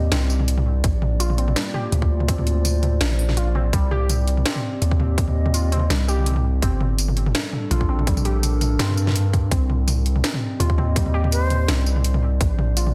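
A deep, sine-toned 808-style bass sits up front from the opening of this cinematic, heavy half-time drum and bass excerpt. At 0.1 s a layered, driven kit of cracking snare, bright hats, tambourine and toms in studio reverb enters, and from 0.8 s it is joined by a tight, overdriven electronic kick. Beneath them, a moody, detuned analog pad holds sustained chords with chorus and sidechain pumping over a Cm, Bb and Gmadd9 progression, while a warbling, lo-fi pluck spins arpeggios through chorus and digital delay, and a breathy jazz flute with vibrato touches a single delayed note at 11.3 s in the dense, heavily limited mix.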